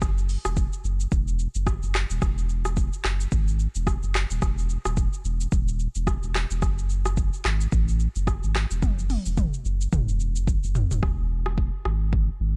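A deep house drum kit sits up front in this breezy, sunny afrobeats excerpt, its layered electronic sound built from a deep kick, dark hi-hats, handclaps, rim clicks, shaker and toms, all roughened by a vintage 12-bit sampler grit and riding a swung sixteenth-note feel. Beneath it, a round, sine-toned sub bass with a fast attack holds long, sustained low notes just as prominently. The dry mix carries a drum fill from 8.8 to 11.0 seconds, after which the hi-hats drop out for the closing moments.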